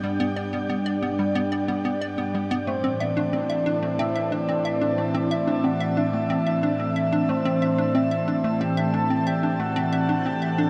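Ambient, sequencer-driven space music with a cosmic, mysterious mood, where a resonant, evolving pad sustains chords from G to A minor beneath a bouncy, hollow square-wave pluck riff with chorus and delay, a bubbling stepped-filter texture drifts in the background, and a round, mellow octave-layered synth lead with vibrato carries the melody from 2.7 seconds, all bathed in a dark shimmer reverb.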